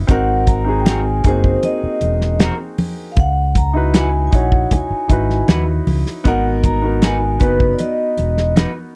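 Cinematic and silky, this short cut from a longer piece is lush 1970s-style soul at 78 BPM in straight 4/4, moving from G#9 to C#m11 and then G#m7. A dark, smooth vibraphone played with medium mallets carries the melody, its metallic ring shimmering with a slow motor vibrato and a slapback echo. Underneath, a warm grand piano provides accompaniment from the very start, while an overdriven fingered electric bass sits up front with a punchy, amped tone. A cloth-damped, thuddy drum kit with a tight kick, medium-tuned snare, hi-hat and rolled-off top drives the groove, joined in the background by bright, low-tuned congas struck with hard hands. At 0.9 s a twangy electric guitar through a small old amp enters with a slightly broken-up, picked riff, all captured in a dry, close 1970s-style studio sound with little reverb.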